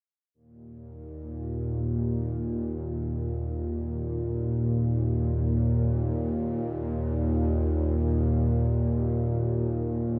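Drenched in huge, cavernous reverb with an 8.9-second tail, this dark ambient fragment unfolds in free time and is cut from a longer piece. A high Eb5 sounds at 0.3 s. From 1.0 s to 10.2 s a bowed-like drone sits up front between Eb2 and Bb2, its detuned sawtooth unison, noise layer and vibrato giving a tense, string-like brightness that rises with a slow attack and fades on a long release.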